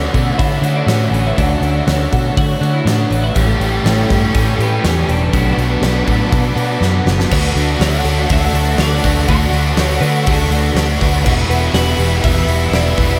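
Soaked in a huge ambient reverb, this dreamy, wistful shoegaze and dream pop excerpt in D major moves at 122 BPM, with a punchy, gated 80s drum kit and a round, foam-muted vintage bass up front beneath three overdriven guitars (a biting one with reverse reverb, a very quiet double-tracked semi-hollow one and a raw garage one set back with chorus), while a twangy twelve-string electric guitar melody with analog delay, shimmering fingerpicked twelve-string acoustic arpeggios and a mellow, slow-attack string machine cello pad drift over chords from Dmaj9 to Emadd9, with a drum fill at 6.8 seconds leading into the second section at 7.3 seconds.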